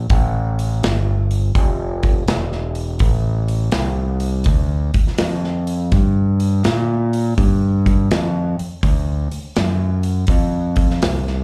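Heard live through a club's PA with only a touch of room reverb, this smoky, gritty cut from a longer blues rock and southern rock power-trio piece swings in D minor at 82 BPM, with a bright, overdriven, growling fingered electric bass up front and, from 0.1 seconds, an acoustic rock kit of boomy kick, medium-tuned snare and hi-hat.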